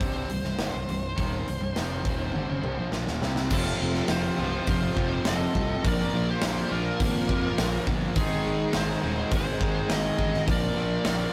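Hard rock at 103 BPM in 4/4, driving and menacing, cut from a longer piece and heard in a rough rehearsal-room recording with light reverb and saturation. A big rock drum kit sits up front with a punchy kick, medium-tuned snare, toms and bright cymbals, while a growly fuzz-fingered electric bass anchors the low end. Two picked riff guitars start together, one biting and overdriven but very quiet, the other tight and distorted in the background, under a high-gain lead guitar carrying the melody between Ab4 and Eb5. After a drum fill from 2.4 seconds, a double-tracked cranked stack guitar joins the riffing at 3.5 seconds, along with a dark, smooth second lead line tucked behind. A very quiet, swirling phased pad with an airy sawtooth tone adds sustained chords from 4.3 seconds as the harmony moves from C minor through F, Bb and Ab.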